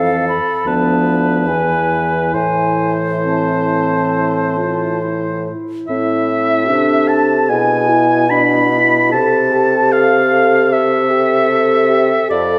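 A wind quintet opens together in a slow, elegiac movement in A minor, its rubato 4/4 pulse drifting between 67 and 77 BPM. The concert flute carries the yearning melody high in its range with an airy, hollow tone, vibrato and crisp attacks, while the oboe sits up front on a second line with a smooth-topped, vibrato-laden sound. Beneath them, the clear clarinet stays in the background and the mellow French horn adds soft-edged accompaniment. The bassoon anchors the bass with a warm, vibrato-tinged voice. The harmony moves from Fmaj7 through Bdim/D and E to settle on A minor, and the opening phrase returns at 5.9 s, later touching E/B and Am/C. A wet recital-hall reverb surrounds the ensemble, and the passage is cut from a longer piece, stopping at 12.6 s.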